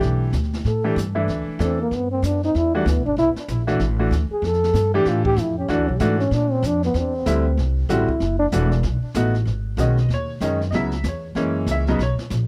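Opening at once on a breathy, dark trombone solo touched with tape echo and light vibrato, this swinging, late-night small-group jazz cut moves over clear, short-sustained baby grand piano, a woody, growly pizzicato upright bass and a brushed kit with a boomy kick, all in a dry, close 1970s-style studio sound, before the trombone stops at 8.5 seconds and the harmony shifts to a new minor centre at 9.5 seconds.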